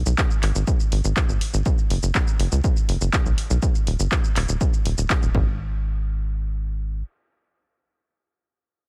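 A tight, driving sawtooth sequencer bass with a plucky filtered attack pumps against an up-front punchy electronic kick and an analog drum machine of handclaps, hi-hat and shaker in this dark, hypnotic melodic techno fragment at 122 BPM, the drums re-recorded in a large room yet dry overall, with the percussion dropping away by 5.4 seconds and the bass continuing alone until 7.0 seconds.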